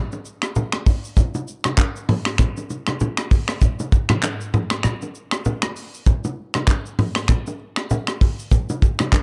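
A swung sixteenth-note afrobeats groove at 98 BPM in 4/4 drives this joyful, sunny excerpt, where a tight, natural-sounding funk drum kit of kick, hi-hat, rim clicks, toms, shaker, handclaps and finger snaps sits up front alongside warm acoustic bongos and congas in a dark, warm small-room sound, with a brief break from 4.8 to 6.1 seconds.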